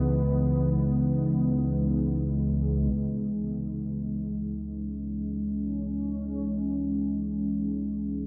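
This dark ambient drone opens with a resonant, detuned pad holding sustained chords in C# minor, joined from the first moment by a deep, rumbling drone that sits low beneath it. The mood is ominous and unsettling, floating in free time, with the harmony resting on a rootless A/C# voicing. The pad is up front, its sawtooth and sine tones evolving through a filter swell and thickened by chorus. The drone blends triangle and sawtooth tones with slow attack and long release, carrying its own reverb. From 2.9 seconds a filter sweep moves across the synth drone, shifting the colour as the passage continues to its cut at 8.3 seconds. The production is dark and soaked in a huge reverb, its upper range trimmed so the sound stays dark and warm, as befits a fragment taken from a longer piece.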